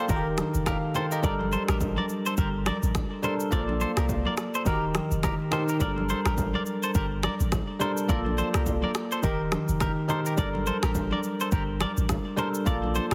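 A bell-like tine electric piano sits up front with a lush chorus, spelling out a looping Eb, Gmadd9 and Bbmaj7 progression over this hypnotic, mellow afrobeats groove in G minor at 105 BPM, with a swung sixteenth-note feel. A twangy, picked electric guitar riff with spring reverb and delay sits behind it, while a punchy sine sub bass with a pitch-drop attack and a deep house kit of deep kick, finger snaps, rim click and shaker enter at 0.1 seconds, and ringing, vintage-toned congas join in the background at 0.4 seconds. A barely audible downlifter sounds in the opening moments, and the whole short cut carries a heavily compressed, radio-like digital ambience.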